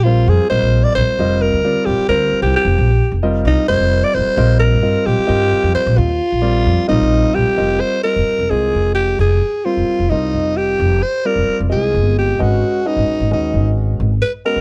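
A growling, raspy alto saxophone carries the melody up front with scooped notes and a gritty subtone, over a woody pizzicato upright bass and a dark, mellow grand piano in this intense, funky electric jazz fusion excerpt in 7/8, captured dry and close in a 1970s-style studio as the harmony moves from suspended chords to Fm9 and Abm7 after 7.6 seconds.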